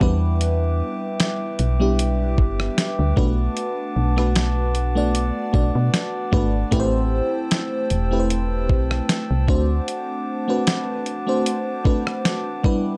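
Dark, warm production wraps this late-night, sensual slice of contemporary R&B in a digital ambience, cut from a longer piece and moving in a gently swung 4/4. An FM electric piano with a soft pad layer carries the accompaniment up front, its lush, dreamy tone shimmering with chorus and tremolo as it moves through Em7, Bm7, Am7 and D7. Above it, a glass harmonica holds sustained chords with a glassy, ethereal quality, its slow attack and beating adding an airy halo further back in the mix. A dusty soul sampler-style drum kit sits forward with gritty, compressed character, pairing a thumpy kick and fat snare with hi-hat and rim click until 12.8 s. Underneath, a solid FM bass gives punchy, round low end before dropping out at 9.8 s, leaving the keys and drums to carry the final moments.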